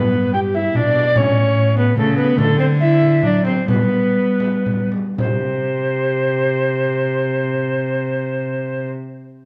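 A courtly, festive renaissance-style consort dance in triple time, this excerpt from a longer piece sets a mellow, airy alto recorder with soft chiff and expressive vibrato up front on the melody, a bowed gut-string viola carrying a reedy second line, and a dark, smooth-topped cello holding the bass close to the listener. A small, bright frame drum sounds from a distance between 0.5 and 5.4 seconds, while the pace eases from 1.8 to 5.2 seconds before the second section begins. The dark production sits in a wet recital hall.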